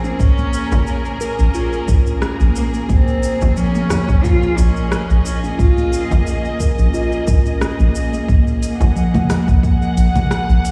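A distant, smooth cello melody opens over veiled, con sordino string chords, ringing steel tongue drum arpeggios under a sweeping low-pass filter and delay, and a tape-toned afro-pop kit of cabasa, congas, hi-hat and rim click, setting a hypnotic, meditative organic downtempo groove at 89 BPM in Bb minor with a light 16th-note swing. A round, dark analog bass pumps with the strings just after the start, joined by a deep electronic kick and a close, dry frame drum in the background, while the harmony moves from Bbm7 to Gbsus2/Bb at 8.3 seconds. The cello drops out at 6.6 seconds, leaving the strings, steel tongue drum, drums and bass to carry this short cut through a large, reverberant room sound.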